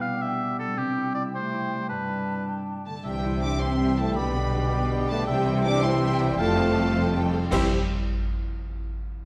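A clear oboe, a dark clarinet and a hollow flute trace second lines over ringing, fingerpicked concert harp arpeggios, opening this heroic, triumphant cinematic adventure cue in 6/8. At about 3 seconds the full orchestra arrives: an intense violin section carries the melody with light vibrato, supported by a softer violin line, lush violas, cellos and a rich double bass section, while mellow French horns and very quiet trombones hold sustained chords. Bright, up-front clash cymbals, a cymbal swell and concert bass drum join at 5.3 seconds, ahead of a full-band accent at 7.5 seconds, all in a dark production with moderate stage reverb.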